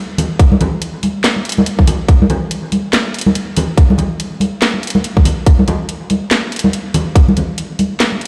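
Dark and cavernous, this short dubstep cut moves at 142 BPM in a half-time feel with a 59% swing on the sixteenths, its garage drum kit of cracking snare, handclaps and warm hats running from 0.2 to 8.3 seconds alongside a tight, layered electronic kick that enters at 0.4 seconds and sits loudest in the mix. Ringing, medium-tuned acoustic congas played with soft hands carry a dub echo, while light reverb and digital ambience frame the whole, as if heard through a big sound system in a bare stone room.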